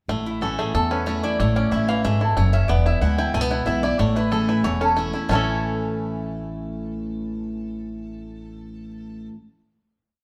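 The recording has the sound of a band playing live together in a stone room, with a damp, echoing reverb around the instruments. This short bluegrass piece in A major runs at a brisk 185 BPM in a straight 4/4, rustic and driving from start to finish. A lap resonator guitar carries the melody, a metallic, nasal slide line played with fingerpicks that runs a fiddle tune in steady eighth notes. Beneath it, a full-bodied dreadnought acoustic guitar sits up front, alternating bass notes and strums with bass runs, while a mellow, twangy banjo rolls out percussive three-finger patterns. The pizzicato upright bass gives a woody, thumpy two-beat of root and fifth with walk-ups, moving from A to E at 2.7 seconds and back to A at 4.0 seconds. A single strain gives way to a final chord at 5.3 seconds, ringing out until the band stops just past 9 seconds.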